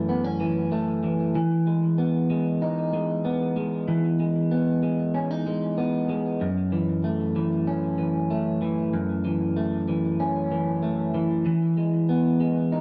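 A lone electric guitar, pushed to the edge of break-up, is heard from the very first moment, playing solo for the full 12.8 seconds of this short cut from a longer dream pop piece. The mood is hazy and melancholic, moving at a straight 95 BPM in 4/4 and centred on F# dorian. The picked guitar sounds slightly broken-up and compressed, sitting up front, and a lush chorus and delay add shimmer to its tone. Its range spans F#2 to D#4 as the harmony drifts from F#m7 to Emaj7, back to F#m7 at 6.4 seconds, and on to E near the close. A wet studio reverb with a short decay surrounds the playing, lending the whole passage a soft, dreamy glow.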